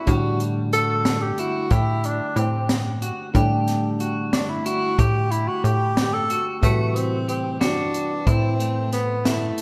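Awash in wet hall reverb with a big arena sound, this tense, driving progressive instrumental, cut from a longer piece, moves in 5/8 as a breathy tenor saxophone with light vibrato and scooped notes solos up front through the first 6.6 seconds, carried on slapback echo over a dark, mellow concert grand piano, clean picked electric guitar arpeggios glistening with lush chorus and tape echo, a plucky, funky analog bass holding A2, and an open jazz drum kit with a high-tuned snare and punchy kick.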